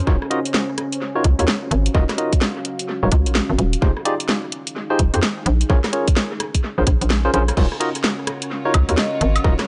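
A hollow, knocking FM bass sits up front in this soulful, bouncy two-step UK garage excerpt, punching through at 128 BPM in Eb dorian with a swung 16th-note feel. A tight, layered electronic kick and a garage kit with a cracking snare, hats, rim clicks, woodblock and crash drive the groove, the kit's hits trailing off in dub echo, with a drum fill at 7.3 seconds. A bright, barky tine electric piano plays clean stabs through a low-pass filter and analog delay over chords moving from Ebm9 through Fm9 and Bbm9 back to Ebm9. Beneath it all, a deep, moody sawtooth-and-sine pad with chorus and built-in reverb breathes with sidechain pumping. A studio violin section with a reedy, gut-string tone enters at 7.6 seconds with sustained chords in the background, and a mellow soft-mallet vibraphone rings out a brief Eb5 note at 9.0 seconds, wrapped in dub echo, inside an echo-heavy, lightly reverberant mix.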